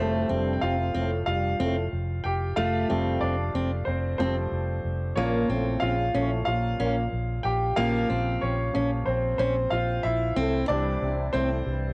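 Recorded at home on cassette in a small room, this hopeful, anthemic pop excerpt puts a clear, polished baby grand piano up front as the soloist throughout, backed by a round, foam-muted electric bass, a full-bodied fingerpicked jumbo acoustic guitar riff and a dark, smooth-topped French horn section on the second line, with plate reverb on the piano and horns as the harmony moves from Fadd9 through Bbm to C.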